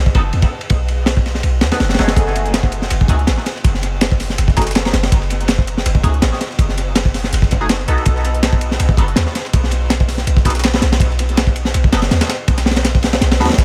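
Riding a swung 163 BPM jungle breakbeat, this dark, atmospheric drum and bass excerpt pairs a crunchy, saturated up-front kit of tight kick, high-tuned snare and dark ride (its kick dropping out from 1.4 to 2.2 seconds) with a pitched-up, tape-toned sampler kit of filtered hats and snare that enters in the background at 2.2 seconds, while a deep, boomy 808-style sine bass and nasal, band-passed sawtooth chord stabs with phaser, subtle chorus and dub echo move from B7 to F#m69 and back in a small, echo-heavy room.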